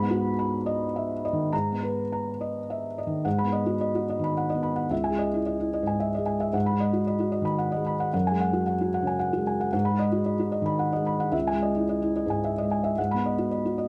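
A close, intimate sound with a moderate spring reverb frames this short cut from a longer neoclassical minimalist piano piece, reflective and wistful in G# minor, moving in a rubato 3/4 at roughly 102-114 BPM and tuned to A4 = 435 Hz. A felt-muted upright piano plays alone throughout, sitting up front with a dark, mellow tone softened by thick felt, and the action noise of its mechanism is audible. The harmony circles back to G#m7 between colourings of G#madd9, C#madd9 and F#sus2, settling into a new phrase from 3.3 seconds onward.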